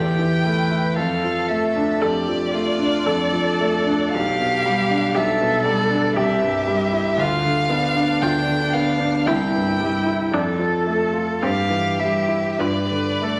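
In an uneven, rubato 3/4 at 58 BPM, this lyrical slow romantic movement for piano quartet in C major features an up-front violin carrying the melody with vibrato, portamento and a soft attack, while a rich, close cello sings a second line, a clear, focused viola accompanies in the background, and a warm, vintage concert grand with deep bass sits up front, the whole fragment of a longer piece bathed in a wet scoring-stage reverb with a touch of vinyl crackle.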